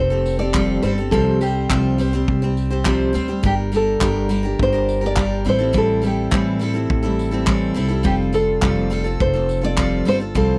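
A full-bodied, fingerpicked nylon-string guitar carries the melody in this carefree, sunny acoustic pop piece at 104 BPM in F major, over a bright, up-front picked steel-string acoustic guitar, a woody, dark pizzicato upright bass and a loose indie drum kit with punchy kick, handclaps and tambourine that enters at 0.3 s, all captured as a dry, close 1970s-style studio recording with small room ambience.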